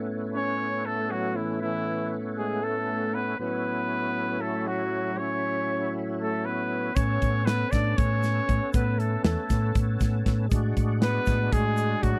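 Bright and driving, this progressive instrumental excerpt in A major moves in 7/8 at 236 eighth-note beats per minute, with a gritty overdriven tonewheel organ through chorus vibrato and a slow rotary speaker comping on Aadd9 and A69 while a clear, vintage-toned trumpet carries the melody up front over a breathy, close-miked trombone on the second line. At 7.0 s a round, dark hollow-body electric bass and a polished studio drum kit with a punchy kick and medium-tuned snare join in, alongside a grainy egg shaker tucked in the background, as the harmony returns to Aadd9 before shifting to a rootless E9/A. The sound is dry and close, in the manner of a 1970s studio recording.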